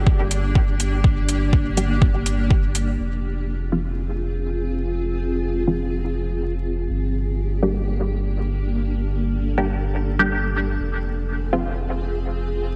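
A bright, 1980s-style digital sheen with light reverb and a layer of vinyl crackle frames this nocturnal, hypnotic dub techno excerpt, cut from a longer piece and moving at 123 BPM in a straight 4/4 in F dorian, tuned to A4 = 438 Hz. A cloudy, evolving granular pad holds sustained chords throughout, its blurred, detuned unison voices shaped by a moving notch and built-in reverb, while a round, soft sub bass with tube saturation sits up front, both breathing with sidechain pumping. In the opening section, an overdriven electronic kick and metallic, low-passed hi-hats play up front, while a flickering, grainy texture hovers in the background until 3.0 seconds. From 1.8 seconds a muted, detuned chord stab with a short filter pluck enters, coloured by chorus, phaser, 12-bit sampler grit and dub echo, with a filter sweep running across it. The harmony alternates between Gm and Fm.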